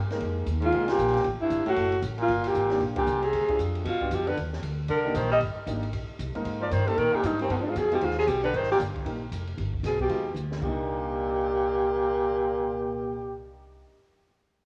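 A breathy, up-front alto saxophone carries the melody with a clear tone and light vibrato, while a whispered baritone saxophone adds a soft-edged second line beneath it in this cool, late-night small-group swing and bop excerpt, cut from a longer piece. A woody, thumpy upright bass and a polished grand piano support them, and an open drum kit with dark cymbals, a high-tuned snare and a boomy kick plays until a fill near 10.4 seconds, stopping at 10.7 seconds. Band accents punctuate the opening, the alto and drums carry a cassette-tape coloring, and moderate spring reverb gives the homespun recording an intimate glow.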